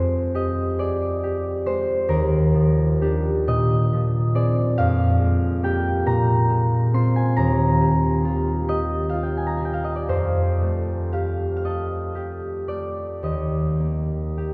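A cathedral's long, wet reverb surrounds a ringing, up-front concert harp in this peaceful, graceful classical solo excerpt in a rubato 6/8, its thumb-plucked tones spanning from Eb2 to C6 as extended chords like Fm9, Ebmaj9 and Bb11 drift toward a closing Eb6.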